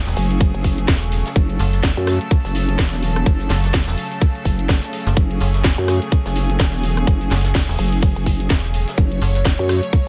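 Distant, earthy chamber strings hold bowed chords with light vibrato over a metallic, digital FM bass as this swaggering, bouncy bass house excerpt in F# minor opens at 126 BPM with swung 16ths, soon joined by a garage kit with a cracking snare, a very quiet brush kit with a smooth, rolled-off top, a nasal, resonant vowel-sweep wobble bass with chorus and overdrive, and a tight, up-front electronic kick that enters at 0.4 seconds, while the strings and both basses pump from the sidechain inside a small room ambience.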